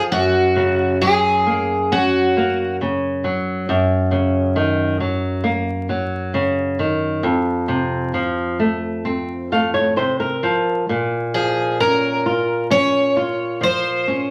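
Rubato over a loose 4/4, this mournful, passionate fado-style ballad is a short passage cut from a longer piece. A dark, fingerpicked flamenco guitar carries the accompaniment up front from start to finish, spanning a deep low register up into its high treble. A picked twelve-string acoustic guitar states the melody at the opening, falls silent after 2.8 seconds, and returns at 11.3 seconds, its fresh strings giving a shimmering, octave-doubled, full-bodied tone that sits close to the listener. The harmony moves from Gb through Ebm7/Gb to F, and a brief nylon-string guitar fill arrives at 9.0 seconds, just before the chords settle on Bbm at 10.9 seconds. Wet studio reverb and vinyl crackle surround the guitars with an aged, intimate atmosphere.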